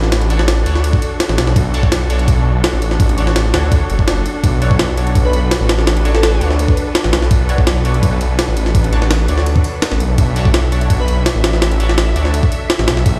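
Drum and bass with a jungle edge at 167 BPM in B minor, this raw, nostalgic fragment sits on a single Bm7 chord, driven up front by a compressed, pitched-up sampler-style kit with a thumpy kick, high-tuned snare and ride, alongside a thick, beating, menacing detuned saw bass. In the background, a studio string section carries sustained chords with vibrato, portamento and a smooth top roughened by 12-bit sampler grit, while nasal, band-passed chord stabs pass through chorus, phaser and dub echo. An airy, dreamy lead appears only briefly, at 5.2 and 11.0 seconds, coloured by chorus, cassette tape and dub echo, and the whole mix rings as if played on a big sound system in a bare stone room.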